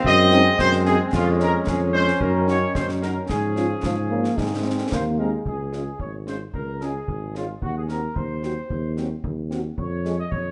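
A dark, up-front trumpet section carries the melody through this rousing, festive military-style march for wind band in Db major at 111 BPM in 2/4, over a mellow, lightly vibrato tuba bass, smooth-topped trombone chords that stop at 5.2 seconds, a soft-attack French horn accompaniment in the background, a brief warm euphonium second line from 3.8 to 5.5 seconds, and close concert bass drum, snare and dark clash cymbals, all set in a roomy large-studio reverb in this short cut from a longer piece.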